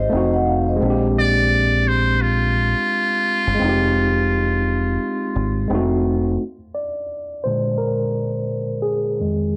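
Muffled cassette tape tone and light reverb frame this nostalgic, reflective lo-fi hip hop excerpt at 86 BPM with a swung 4/4 feel, where a mellow, soft-mallet vibraphone rings briefly at the start, a worn, slightly out-of-tune tine electric piano supports the jazzy chords over a round, punchy dub bass, a buzzy, breathy muted trumpet carries the melody from 1.2 seconds, and at 6.4 seconds the bass stops as the electric piano plays solo under a filter sweep.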